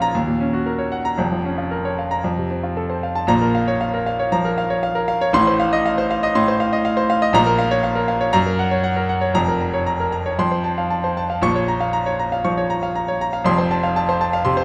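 A rubato pulse near 118 BPM in 4/4 pushes this stormy, agitated fragment of a virtuoso classical piano study in Bb minor forward. A solo concert grand carries everything across its 14.6 seconds, ranging from a deep bass F1 up to Db6. The piano sounds clear and up front, with a vintage character and a short sustain that keeps its figures distinct. A brief opening passage moves from Ebm7 through Bbm/F to F. From 3.3 s a longer passage circles Bbm, F7/A, Gb and F. A moderate concert hall reverb with a 2.3-second decay surrounds the instrument and gives the turbulent writing a sense of space.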